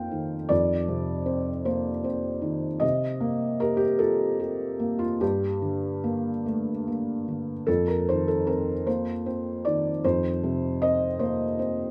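In a rubato 6/8 at 51 BPM, felt by the dotted quarter, this short excerpt of neoclassical minimalist piano unfolds in a wistful, reflective mood. A solo felt-muted upright piano sits up front with a soft, mellow, intimate tone, spanning F2 to G5 as the harmony moves from F7 through Cm7 and Gm before settling on F5 at 7.7 seconds. The natural, close sound carries little reverb, and the opening phrase returns at 7.7 seconds to close out the 11.9 seconds.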